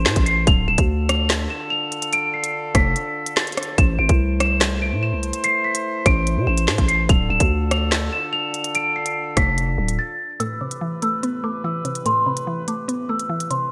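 A bell-like celesta melody, delicate and sweet with soft felt hammers, opens this dark, ominous drill excerpt at 145 BPM in a half-time feel, washed in lush chorus, a low-pass filter and digital delay. Beneath it, a mellow brass ensemble holds smooth, classical-style sustained chords throughout, moving between Dm and Amadd9 in A minor. A growling, buzzy 808-style bass sits up front with a fast attack and decaying tail until it stops at 10.0 seconds, while the electronic drill kit drives the track with a hard-clipped kick, woody snare, crisp hi-hats, handclaps and rim clicks, roughened by 12-bit sampler grit and gated reverb. Brief breaks interrupt the groove, and at 10.4 seconds a new section brings in a round, full-bodied FM pluck with a mallet-like, percussive character and short decay. The production is bright in a 1980s digital style with light reverb, and the piece is cut from a longer work.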